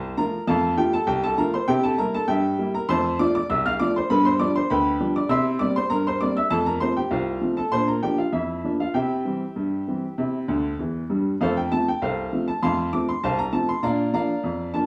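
A clear, woody and boxy upright piano plays solo and up front in this playful, jaunty ragtime piece in F major at 99 BPM in a straight 2/4, tuned to A4 = 436 Hz, ranging from C2 to F6 over changes such as F, C7, G7 and Bb, with a fill at 10.5 s before the opening section returns at 11.4 s, all set in a wet club reverb with studio ambience, in a passage cut from a longer piece.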